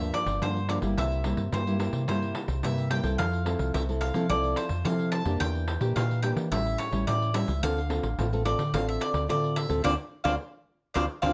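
Samba and choro in D minor at 108 BPM with a yearning, bittersweet mood, this 11.3-second excerpt of a longer piece features a bright, double-strung bowl-back mandolin soloing up front over fingerpicked classical nylon-string guitar, a dark, round fingered electric bass and a jingly, saturated pandeiro, moving through Gm7, C7, Fmaj7, Em7b5, A7 and Dm7 under light reverb and close, detailed microphones before a band accent at 9.8 seconds.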